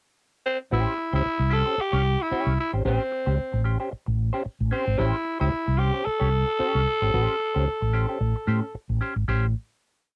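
The recording is dry and close, with the intimate feel of a 1970s studio session and little reverb. This short, complete funk piece has a gritty, playful mood and a swung sixteenth-note feel. A breathy tenor saxophone opens with a brief pickup at 0.5 seconds, then carries a raspy, punchy, vintage-toned melody built from short call phrases, sitting up front. At 0.7 seconds the fretless bass and semi-hollow guitar enter over a single A7#9 chord. The dark, round bass plays a syncopated riff anchored on the downbeat, full of muted ghost notes and chromatic approach notes with a subtle chorus. The clean, hollow-bodied guitar scratches out muted sixteenth-note rhythm through a wah pedal, and the piece settles on a final chord at 9.3 seconds.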